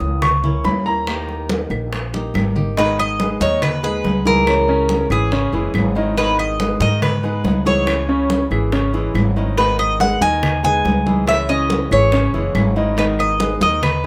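A clear grand piano leads this sultry Cuban son and guajira passage with arpeggios over a boxy, fingerpicked flamenco guitar, a growly, thumpy upright bass played pizzicato up front, thick-skinned congas, tight, high-tuned bongos with hard hands set back in a large room, and woody claves in the background. A drum fill at 2.1 seconds sets up the entrance of the Cuban tres at 2.8 seconds, whose metallic, picked double strings carry the melody up front as the harmony sways between G# minor and C# minor. Light reverb rounds out the sound of this piece cut from a longer work.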